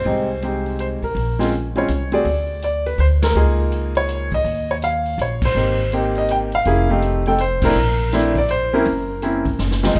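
A clear, intimate baby grand piano carries the melody in this late-night jazz trio waltz, its action noise audible up front as the harmony moves from a rootless Fm9 through Db69 and Abmaj9 to a closing Gb(#11). A woody pizzicato upright bass sits close alongside it, and a swinging drum kit with a punchy kick and medium-tuned snare joins at 0.4 seconds. The trio lands band accents through the middle before a drum fill at 9.6 seconds. The trio is heard in the moderate reverb of a recital hall, in this brief swinging cut from a longer piece.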